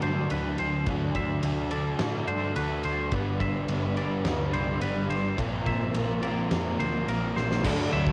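This rock track leans into shoegaze and dream pop, a wistful, hazy fragment cut from a longer piece, moving at 106 BPM in a straight 4/4 over chords of D, G and Bbsus2. A bright, twangy electric guitar plays clean, compressed arpeggios coloured by analog chorus, analog delay and cassette tape. Beneath it, an overdriven semi-hollow guitar carries an up-front riff bathed in lush chorus, while a second hollow-body riff sits in the background, smeared by reverse reverb. A dark, round, foam-muted electric bass and a huge arena drum kit with bright cymbals, a fat snare and a punchy kick hold the groove, with a drum fill at 7.4 seconds. At 7.6 seconds another double-tracked overdriven semi-hollow guitar riff joins in the background alongside a very quiet, jingly, distant tambourine, all wrapped in the small-room ambience of a cassette home recording.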